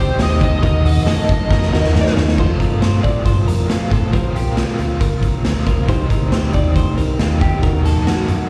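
This short excerpt sounds like a live gig heard through the venue's PA, with recital-hall reverb around it. It is jangly indie pop with a youthful, bright mood, moving through Cm, Ebm, F and Bbsus2. A raw garage drum kit enters at 0.2 s, gritty and punchy in a pumping stone room, and sits up front, joined by the dark, foam-muted picked bass. A bluesy, distorted lead guitar carries the melody until 2.1 s, while a drum fill leads into the second section at 2.4 s. Underneath, an overdriven semi-hollow guitar picks its accompaniment with tremolo, a twangy, compressed twelve-string electric guitar picks arpeggios, and a woody, boxy upright piano with audible action noise stays in the background, all three touched by slapback echo.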